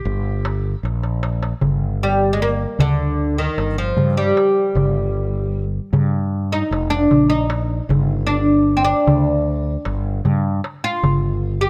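A straight 4/4 pulse at 76 BPM, set by a crisp metal-shell darbuka under soft hands and a punchy, up-front fretless electric bass, drives this hypnotic, longing Turkish makam ensemble passage in G minor, cut from a longer piece, where a mellow, woody, plectrum-plucked oud with double strings carries the melody in a dry, closely miked sound, while a bright, smooth-topped classical clarinet plays a brief G4 until 0.8 s and a drum fill runs from 0.8 to 1.6 s.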